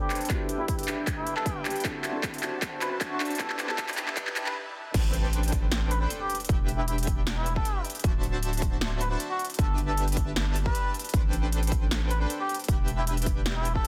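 Future bass at 155 BPM in a half-time 4/4 feel, this dreamy, bittersweet E minor excerpt opens with a build-up: a veiled, cup-muted trumpet sings a jazz-style melody with vibrato and scooped notes over a detuned soft supersaw riff under a filter sweep, a dark, round pluck sits in the background, a very quiet riser climbs, and the punchy, overdriven electronic kick joins a drum fill from the tape-warm big-room dance kit with its crisp hats and punchy snare. After a brief stop at 4.6 seconds, the drop lands at 4.9 seconds with an impact and a deep, saturated sub bass pumping up front, while the harmony cycles through Em7, D9, G69 and Am11. The dense, heavily limited master keeps the sound close and dry, with little reverb.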